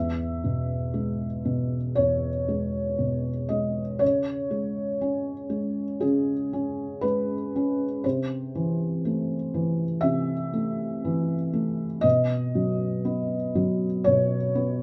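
A felt-muted upright piano carries this brief passage by itself from 0.0 to 14.8 seconds, its thick felt giving each note a dark, mellow tone while the soft clicks and thumps of the action sit audibly close to the ear. The music is neoclassical minimalist piano in E major at 60 BPM in 4/4, played with a rubato feel that lets time breathe. The piano ranges from E2 up to E5, moving through E, C#5, Am/C and Badd9. The instrument is placed up front in a light reverb, and the tuning rests at A4 = 442 Hz. The mood is peaceful and intimate, like a quiet moment lifted from a longer piece.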